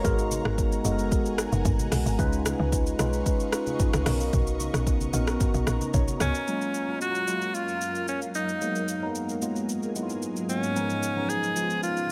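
An edgy, close-miked alto saxophone takes the solo melody from 6.2 seconds, forceful and up front with vibrato and a touch of delay, in this late-night, deep amapiano excerpt. Beneath it, a mellow tine electric piano with phaser comps through warm ninth and major seventh chords, adding a short fill just before 6.5 seconds. An ethereal pad shimmers with chorus and tremolo, while an overdriven deep house kit with deep kick and metallic hats drives throughout, and a punchy, woody log drum bass and faint, bright congas drop out after 6.3 seconds.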